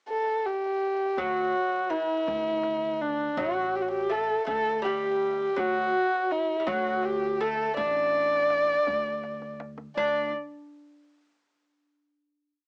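A dark, bowed kamancheh opens this Persian modal ensemble piece alone with a short pickup at 0.1 seconds. It is a single player, close and up front, shaping an ornamented modal melody with vibrato and portamento. At 1.2 seconds the rest of the group joins in 6/8: a delicate, fingerpicked lute on gut double strings, some doubled at the octave, plays the same line with ornaments of its own. Beneath it, a pizzicato upright bass adds a woody, thumpy gut-string tone on the low drum strokes, while a deep, soft-handed tombak sits dry in the background with its pattern of low and high strokes. A drum fill leads into the final note, and all four parts stop at 10.3 seconds. Light reverb and a home cassette recording give the piece a small-speaker sound, with tape colouring the kamancheh and lute, in a mood that is festive yet stately.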